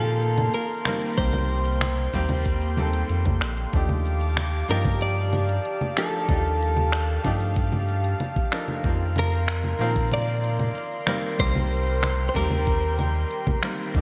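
A clean, picked electric guitar melody with subtle chorus, delay and shimmer reverb opens this relaxed 94 BPM sunset chillout excerpt over a brilliant grand piano, a soft, breathy detuned pad and a round, deep analog bass moving through F7sus4, Cm7 and Ebmaj9#11, as a smooth electronic R&B kit of congas, finger snaps, metallic hi-hat and shaker with gated reverb joins at 0.2 seconds and a gritty, overdriven, thumpy electronic kick arrives at 1.2 seconds, all framed by bright 1980s-style digital production and a moderate plate reverb.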